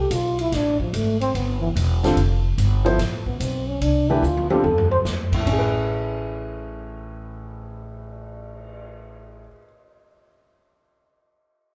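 A breathy, whispered trombone opens this modal jazz passage with a solo over woody, thumpy pizzicato upright bass, joined almost at once by a swinging big-band drum kit with a punchy kick and medium-tuned snare. The tempo sits at 146 BPM in 4/4 with swung eighth notes, and the mood is searching and hypnotic, tuned slightly sharp to A4 = 441 Hz. The trombone's dark tone carries light vibrato, a soft attack and scooped notes, sounding intimate and up front. A concert grand piano with a deep bass register enters at 2.0 seconds as accompaniment over Fmaj9. A drum fill runs from 4.2 to 5.0 seconds near the end of the trombone solo, and at 5.5 seconds the harmony moves to Amaj9 as bass, piano and drums carry on in a fresh section. The band plays live together in one room, and a moderate large-studio reverb gives the sound a natural depth in this passage cut from a longer piece.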